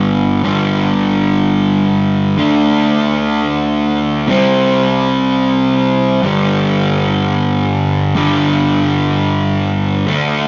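A rough rehearsal-room recording with tube saturation, a darkened top end and a wet studio reverb frames this brief, wistful and dreamy rock fragment, cut from a longer piece, where a solo fuzz guitar, distorted, picked, double-tracked, compressed and up front, moves through the power chords G5, D5, C5 and back to G5 between G2 and D4, tuned to A4 = 442 Hz.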